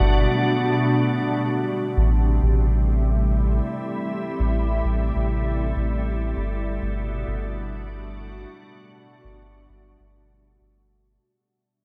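A soft, organ-like pad holds sustained chords throughout, its pure, detuned tone blurred by ensemble chorus and its own reverb, while a round dub sub bass sits deep and up front beneath it. This hazy ambient dub fragment moves at 99 BPM in A dorian, drifting from Gmaj9 to Am7 at 1.5 seconds and back to Gmaj9 at 6.4 seconds, with a brief break before a long fade-out. Huge ambient reverb soaks the dreamy mix.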